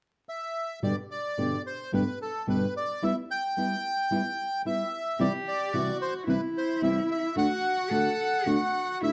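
Through vinyl crackle and a moderate studio reverb, this nostalgic, elegant tango fragment in G major moves at a rubato 110 BPM, with a reedy, close-miked bandoneon carrying the melody from 0.3 s, a dark, thumb-plucked nylon-string guitar accompanying from 0.8 s over G, Em/G, C and D, and a bowed cello adding an expressive second line with vibrato and portamento from 5.2 s.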